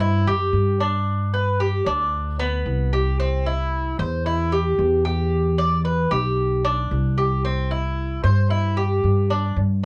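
In a straight, relaxed four-beat groove, this danceable Cuban son and guajira excerpt sets a mellow, metallic acoustic tres picking arpeggios on its double strings, some doubled at the octave, up front beside a woody pizzicato upright bass with steel strings, over chords moving from C through G and Em7, while the recording carries light reverb and a worn, warbly cassette-tape sound with pitch drift.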